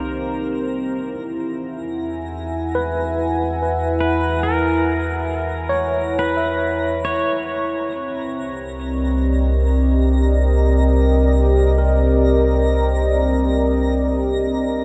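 This warm, luminous ambient fragment opens with a smooth, chorused analog pad holding sustained chords over a deep, ominous rumbling drone, while a twinkling granular texture fades in high above and a barky tine electric piano plays arpeggios through tremolo and delay. A twangy, fingerpicked pedal steel guitar with volume swells and slide carries a delayed melody until 7.9 s, as the harmony moves from Cm7 to Eadd9 and returns to Cm7 at 7.9 s. The mix sits in a vast, echoing space drenched in huge reverb, with the soft grain of cassette tape.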